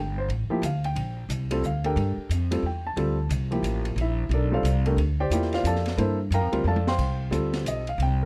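A woody, thumpy upright bass on gut strings sits up front in this hypnotic, intense modal jazz excerpt, swinging in three alongside a smooth, vintage grand piano whose short-sustained Gm11 voicings shift to Cmadd9 at 7.0 seconds. An open acoustic drum kit with a small-room sound, dark cymbals, a high-tuned snare and a boomy kick sits lower in the mix and plays a fill just before that change. The dry, close studio sound has a 1970s character.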